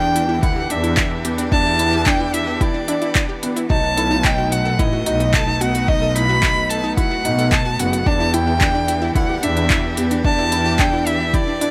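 A straight 4/4 pulse at 110 BPM drives this hypnotic, melancholic piano and strings electronica in E minor, with a deep, layered electronic kick arriving at 0.4 seconds and a deep house kit of handclaps and smooth hi-hats entering just before it at 0.2 seconds. Beneath the beat, a bright, distant double bass section bows a focused bass line with vibrato, pumping against the kick until it drops out at 11.3 seconds. A felt-muted upright piano repeats a soft, intimate riff with audible action noise and a touch of delay, while a background string quartet holds rich, chamber-like sustained chords that breathe with sidechain pumping. A lush, punchy unison pluck, built from detuned sawtooth and sine layers with a noise edge, spins fast-attack arpeggios that decay into delay, also tucked behind. Up front, a single close, expressive violin carries the melody with vibrato, portamento and a soft attack, its echoes floating in light studio reverb as the harmony moves from Em7 to B7 and back in this short section cut from a longer piece.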